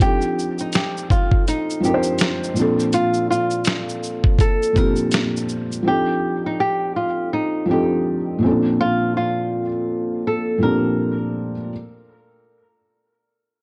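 Cosy and mellow, this lo-fi hip hop fragment sways on a swung groove as a fingerpicked nylon-string guitar carries a small, dark melody with audible finger squeak, softened by a low-pass filter and analog delay. Beneath it, a felt-muted upright piano adds intimate, thickly padded chords with audible action noise, moving between F13 and Bbmaj9. A gritty, compressed sampler-style drum kit, with a thumpy kick, snare, hi-hat and shaker, sits up front until it drops out at 5.8 seconds, all wrapped in light reverb and studio ambience.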